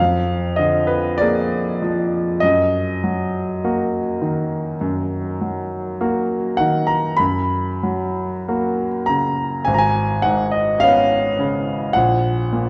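Wistful and melancholic, this short slice of a longer romantic nocturne is played by a single concert grand piano in E-flat minor, drifting in a slow, rubato 4/4 at roughly 46 to 53 BPM. The piano sounds clear, natural and up front, with a deep bass, and it ranges from Ab1 up to Cb6 across its 12.7 seconds. The harmony moves from Bb7 over F through E-flat minor and G-flat to a Db7 over Ab at 9.7 seconds, then settles on G-flat over B-flat at 12.0 seconds. A wet recital-hall reverb lets each phrase hang in the air. The whole recording carries the worn, warbling character of old cassette tape, whose pitch drift lends the music a faded, memory-like haze.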